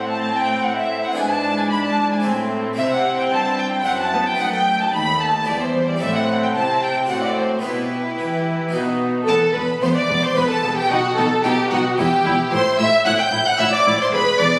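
Dramatic and stormy, this baroque-style concerto movement in E minor at 111 BPM in 3/4 sets a lush symphonic violin section and an expressive, distant solo violin on the melody over a focused viola section, a brilliant, close-miked harpsichord and a cello section gliding with portamento on the bass, while a dark, woody violin section carries a second line and a symphonic double bass section joins the bass at 9.3 s, all heard through the reverberant wash of a recital hall captured on a phone.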